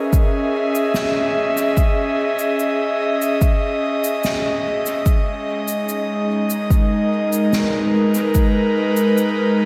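A straight 4/4 pulse at 73 BPM carries this deep, meditative ambient dub fragment in G# minor: an up-front, layered electronic kick anchors a natural, medium-tuned cabasa and snare drum trailing dub echo, while a breathy, detuned pad with chorus and a slow attack holds sustained chords moving from C#madd9 to G#m at 5.1 seconds, the dreamy mix soaked in lush hall reverb.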